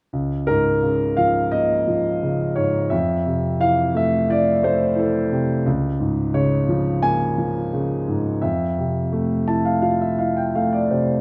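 A dark, mellow concert grand sits up front in a moderate recital-hall reverb, its deep bass and boxy tone carrying a warm, sunny classical piece for lyrical solo piano in 4/4 with a rubato feel, moving through Db6/9, Fmaj7 and Db6 harmonies before a fill from 9.1 to 11.2 seconds closes this excerpt of a longer work.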